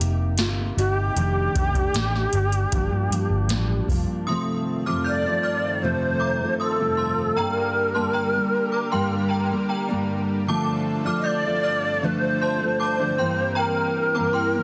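A soft vintage rhythm box, overdriven with a deep kick, crisp snare and metallic hats, opens this wistful, mellow indie-pop and bedroom-pop excerpt at a straight 77 BPM alongside a round, foam-muted electric bass and an up-front, full-bodied fingerpicked jumbo acoustic guitar with subtle chorus and vibrato. At 0.4 seconds an airy, bright shakuhachi melody with vibrato and tape echo joins them. The bass stops at 4.0 seconds and the drums at 4.1, leaving the guitar beneath the shakuhachi, while from 4.3 seconds an inharmonic FM synth chime rings high above and a lush, detuned unison pad holds sustained chords low in the mix, set in light digital ambience with a dense, heavily limited modern master.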